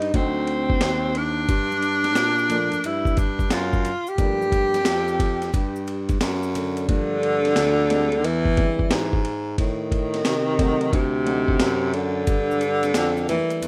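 A breathy tenor saxophone carries the melody from the first moment, alongside a baritone saxophone holding down the bass line and a gritty, pitched-down boom bap drum kit with a thumpy kick and a high-tuned snare. This smoky, cool jazz-hop piece moves at 89 BPM in 4/4 with swung sixteenths, its harmony moving from D7b9 to Gm7, with E7alt and Adim appearing later. Both horns sound whispered and intimate, with subtone, soft attacks, vibrato and scooped notes; the tenor has a distant, roomy quality, while the baritone is close-miked and up front. A woody, vintage upright piano sits in the background, and very quiet, bright maracas and congas enter at 1.5 seconds, drop out at 6.9 seconds and return at 12.3 seconds. Light reverb and a rough home-demo mix shape this short excerpt, cut from a longer piece.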